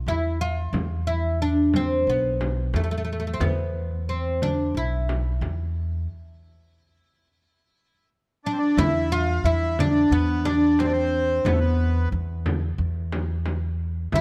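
Arabic maqam ensemble music with a longing, melancholic mood, heard as a fragment of a longer piece in a dry, closely miked sound. A deep, woody, fretless oud with double strings carries the melody up front, supported by pizzicato upright bass on steel strings and a vintage, band-limited frame drum, and the music stops from 6.1 to 8.8 seconds before a new section begins. A reedy, full accordion enters at 8.4 seconds as a mid-forward second line.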